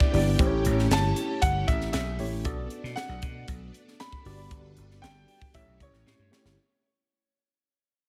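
Polished 1980s jazz-funk pop with an urban, slick mood, cut from a longer piece and fading out over its short span. A smooth grand piano carries the melody through digital delay over a mellow tine electric piano with analog chorus, lush sawtooth string-machine chords in the background, a growly, punchy slap bass entering at 0.1 seconds, and a crisp fusion drum kit with a high-tuned snare, tight kick and gated reverb that closes on a fill at 6.1 seconds.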